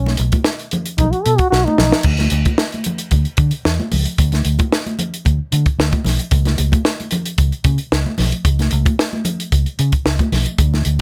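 A mellow trombone opens this energetic, playful funk excerpt with a brief jazz-style solo of scooped notes and light vibrato, over a round, foam-muted vintage electric bass. A compact cocktail kit with a punchy kick, high-tuned snare and dark cymbals plays a fill from 1.5 to 2.1 seconds, and the trombone stops just before it ends. Bass, drums and bright, hard-hand congas then carry the straight groove in a dry room, the bass and drums up front, with the congas dropping out just before the cut at 11.0 seconds.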